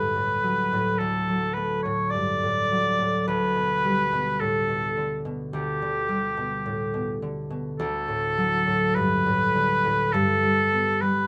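A slow, rubato 4/4 at 53 BPM gives this serene, lyrical romantic duo in D major a freely breathing pulse. A warm oboe with light vibrato carries the melody between G4 and D5 from start to finish, while a bright, ringing concert harp, fingerpicked in the low and middle register, accompanies it over D, G/D, D and finally G at 10.1 seconds. Close, detailed microphones and light reverb frame both instruments up front in this classical passage cut from a longer piece.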